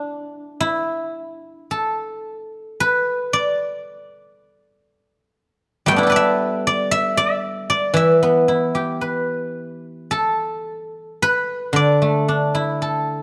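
Close, detailed microphones and a light reverb put a silvery, ringing solo guzheng up front, its fingerpicked strings sounding acoustic and warm. This is a Chinese traditional piece in the E yu mode, longing and elegant, moving at about 57 BPM in 2/4 with uneven, rubato beats that let each phrase breathe. After a brief opening, a longer passage begins at 1.7 seconds and returns at 10.1 seconds before this short fragment of a larger work breaks off.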